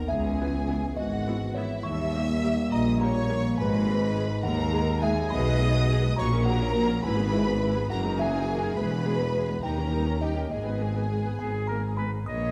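A delicate, tinkling music box opens this quirky, magical cinematic excerpt, carrying the melody in G# minor alongside a focused chamber violin section with a smooth top and vibrato, while a lush, close studio violin section sings a second line beneath them. The pace is 69 BPM in 6/8, and the harmony moves from C#m7 through D# and G#m, returning to G#m after a D#7. Mellow French horns hold sustained chords in the background, and the low end rests on a soft-attacked tuba, an even cello section and a bowed double bass section. A rich studio viola section fills in the accompaniment from 0.4 s. At 11.4 s an airy flute ensemble and a clear oboe with light vibrato join on a brief second line in the closing moments. A concert hall reverb with a 2.4-second decay bathes the dark production.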